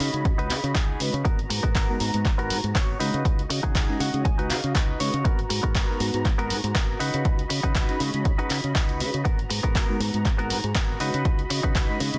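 Dense, heavily limited and bathed in digital ambience, this short cut from a longer filtered disco house track pumps at 120 BPM with a 16th-note swing and a nostalgic, funky mood, as a filter sweep runs through the whole passage over alternating C#9sus4 and G#m9 chords. Analog drum-machine handclaps and sidechain-pumped hi-hats run from the start, with a punchy electronic kick sitting up front from 0.3 s, while a bright fingered electric bass, lush bowed symphonic strings and a round, detuned sawtooth synth brass with chorus and phaser all breathe with the same pumping and low-pass filtering. A twangy, clean electric guitar riff, recorded direct and roughened by vintage 12-bit sampler grit, enters at 0.4 s and adds a fill between 3.8 and 5.3 s.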